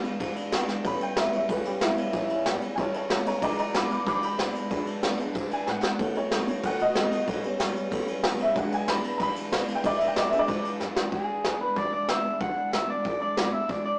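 Retro and rollicking, this brisk, straight-feel rockabilly number at 187 BPM in E mixolydian opens on an up-front brush kit with dark cymbals, a high-tuned snare and a boomy kick, backed by a bright, full-bodied picked acoustic guitar with audible finger squeak and a thumpy, woody gut-string upright bass tucked behind. From 0.8 seconds a detuned, jangly vintage upright piano takes a honky-tonk solo over a bluesy progression that runs from E7 to A7 through a diminished passing chord and on to B7, with brush fills punctuating the phrases. At 11.1 seconds a twangy, slightly broken-up electric guitar through a small old amp steps forward with the melody, and the whole fragment sits in a rough rehearsal-room sound with saturated, small-speaker colour and moderate stone-room reverb.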